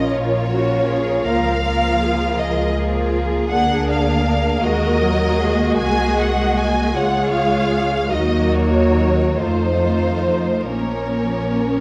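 Drenched in the reverb of a scoring stage and flecked with vinyl crackle, this brief fragment of a slow romantic movement for string orchestra unfolds in a rubato 6/8 with an elegiac, solemn air, as a dark, up-front violin section carries the expressive, softly attacked melody over a warm second violin line, smooth and even violas, focused and lush cellos, and a rich double bass section that enters at 0.1 seconds, all bowed with vibrato.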